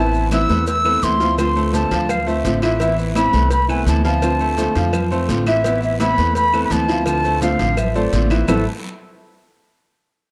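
A reedy, airy concert flute carries the melody from the first moment over fingerpicked nylon-string guitar, brilliant piano arpeggios with short sustain, and an up-front, thumpy pizzicato upright bass on gut strings. This sultry Cuban son and guajira excerpt moves at 169 BPM in 4/4, alternating between Amadd9 and Dm7 and settling into A minor from 5.6 s. Within the first second high-tuned, distant congas and grainy maracas enter, soon followed by claves, a round cowbell and bongos in the background, and a raspy guiro, all framed by moderate spring reverb and a small-room ambience in a dark production.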